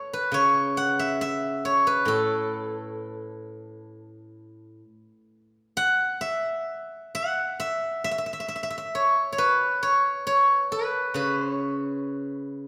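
A solo steel-string zither opens the recording and carries it alone from 0.0 to 12.7 seconds, its bright, silvery tone sitting up front. This is a short cut from a longer piece of Chinese traditional music for plucked strings, serene and elegant in mood. The player uses fingerpicks and moves freely in a rubato feel over a loose 4/4 pulse, spanning from A2 up to F#5 within the A gong mode. A first phrase gives way to a second section at 5.8 seconds. The ringing acoustic strings bloom into a moderate reverb that suggests a church or concert hall, lending the instrument a graceful sense of space.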